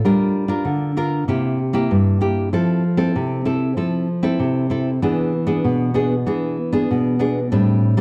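A fingerpicked nylon-string guitar opens this festive, lively samba, playing alone from 0.0 to 8.0 seconds at 96 BPM in a straight 4/4. Its warm classical tone sits up front, moving from Gm7 through C7 and Fmaj7 to E7 at 5.0 seconds. A moderate large-studio reverb and a dark production surround the guitar in this short passage cut from a longer piece.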